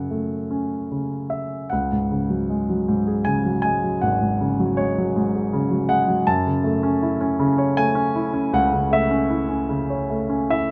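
Rubato, uneven beats in 3/4 around 79 BPM carry this wistful, reflective excerpt of lyrical classical solo piano in F# minor, where a warm, up-front grand piano, heard close and detailed in a dry room, ranges from G#1 to A5 and moves from F#m to C#sus4 at 1.7 seconds before settling on F#m7 at 6.3 seconds.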